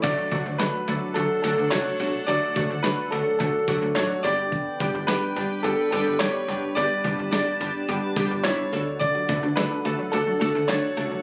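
Synth-pop at 107 BPM in D major, upbeat and nostalgic, this 11-second cut from a longer piece sets a clear, polished baby grand piano melody up front over a round, detuned analog pluck with chorus, while a sweeping resonant pad with chorus and a filter swell sustains chords in the background as the harmony moves from D to G and back to D at 8.7 seconds. A snappy, metallic slap-like FM bass and an overdriven 12-bit drum machine with a thumpy kick, fat snare, handclaps, hi-hat and crash drive the groove. At 9.0 seconds a lush, wave-folded unison pluck enters with arpeggios and slapback echo, all heard through light reverb in a phone recording of the studio room.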